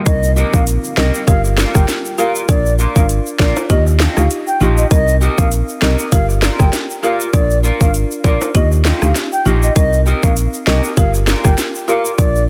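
A solid FM bass, punchy, round and dark with a fast attack that decays, sits up front beside an electronic island pop drum kit of tight kick, sharp snare, metallic hats, rim clicks and handclaps in this hypnotic, bouncy dancehall excerpt in C minor at 99 BPM with a swung 16th feel. A woody, dry folk marimba with medium mallets carries the accompaniment, while a pure wooden flute with vibrato and a crisp attack plays the melody through digital delay, and an electric guitar enters at 0.4 seconds with bright, twangy, slightly broken-up picked arpeggios bathed in lush chorus. Close, acoustic tube shaker and timbales sit low underneath, all under light reverb and a dense, heavily limited modern master, cycling through Cm7, Gm7, Bb and Ebadd9.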